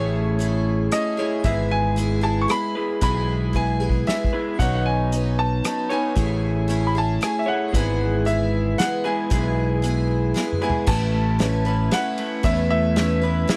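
A 3/4 folk-rock and heartland-rock excerpt with a hopeful glow, where a brilliant baby grand piano with audible action noise carries the melody over a shimmering, octave-doubled twelve-string acoustic guitar, a slightly broken-up electric guitar riff through a small old amp, up-front picked electric bass, and an unplugged drum kit played with bundle sticks that enters at 0.4 s and adds fills at 3.5 and 10.4 s, all captured in a dry, close 1970s-style studio sound as the chords move from Amaj7 toward Aadd9.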